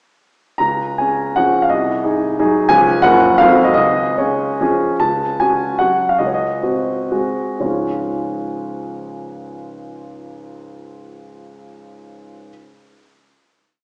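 Graceful and rustic, this brief romantic dance in 3/4 and D-flat major moves with a free, rubato pulse somewhere between 107 and 194 BPM. A warm concert grand plays solo, with a single-line melody over deep-bass and chord accompaniment that stresses the second or third beat, and its long sustain rings into a wet scoring-stage reverb heard from further back, with a small-speaker quality. The pace slows from 4.4 seconds into a brief coda before settling on a final D-flat chord at 7.6 seconds.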